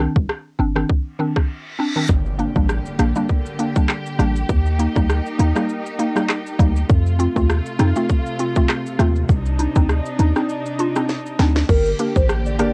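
Dancehall with a hypnotic, bouncy swing, heard as a short cut from a longer piece with the lo-fi character of a home cassette recording in a light reverb. A woody, round mallet-like synth pluck with a warbling chorus opens alongside a deep, boomy 808-style bass that sits up front, and the electronic drum kit joins at 0.2 seconds with a tight kick, sharp snare, smooth hats, handclaps, rim clicks and shaker, all overdriven and gritty with sampler crunch. A reverse cymbal rises in the background while the drums drop out briefly, landing on an electronic impact at 2.1 seconds as a lush, bowed string section enters with sustained chords that pump under sidechain compression. The harmony moves from Cmadd9 through Gm, Eb and F before circling back, and a drum fill leads into the final stretch. At 11.7 seconds a hollow, clarinet-like synth lead with vibrato, phaser and tape echo takes up the melody over a return to Gm.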